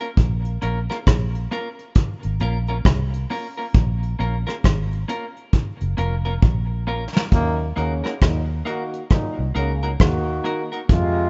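The swung sixteenths of a slow 67 BPM roots reggae groove in Eb dorian are carried by a dark, up-front brush kit with tight kick, rim click and hi-hat, a round, foam-muted vintage bass, and a clean, compressed semi-hollow guitar steeped in tape echo, and after a drum fill a punchy trombone section with light vibrato enters at 7.3 seconds as the harmony moves from Bbm to Ebm, giving this meditative, hypnotic fragment a rough home-demo mix with studio reverb and a dull top end.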